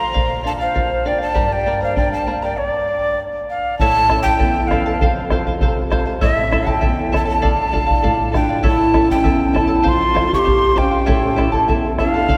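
In a straight 2/4, this melancholic, earthy Andean folk fragment sets a breathy, up-front cane quena melody with a crisp chiff over shimmering fingerpicked charango, dark thumb-plucked flamenco guitar and a deep, close bombo that enters at 0.2 s, while a distant, reedy pan flute with vibrato adds a second line that drops out at 2.6 s and returns at 8.4 s, the ensemble steeped in the long, wet reverb of a church or concert hall.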